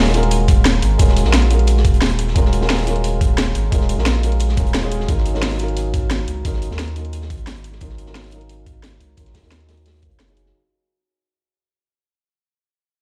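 Liquid drum and bass at 176 BPM in 4/4 with a straight feel, this rolling, melancholic excerpt is cut from a longer piece and moves from Ebm11 to Ab13sus4 at 5.1 seconds. A dark, mellow, boxy grand piano carries the accompaniment between Gb3 and Bb4, shaded by a low-pass filter and delay, with a filter sweep running across it for the whole passage. Underneath, a deep, thick sine sub bass sits up front from Eb1 to Eb2, its saturation and fast attack giving it sustained weight. The drums stack three parts: an electronic, layered kit with a cracking snare and hi-hats placed up front, a quieter acoustic breakbeat kit that sounds crunchy and smooth with a medium-tuned snare, high-passed hats and a rolled-off top, and a gritty, thumpy, tape-warm kick that enters at 0.5 seconds. A large studio reverb, like a big sound system in a bare room, surrounds the mix, and the whole excerpt fades out across its 10.5 seconds.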